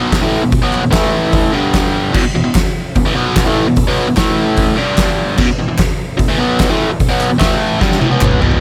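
A dry, up-front garage rock excerpt at 148 BPM carries a rowdy, swaggering mood as a biting, bright overdriven electric guitar, picked and double-tracked, plays a riff moving through E5, A5 and G5 while an oversized, low-tuned acoustic drum kit with a boomy kick, fat snare, dark cymbals and a gritty, saturated pumping-room sound drives along, hollow group handclaps sit in the background, and a drum fill arrives at 7.8 seconds.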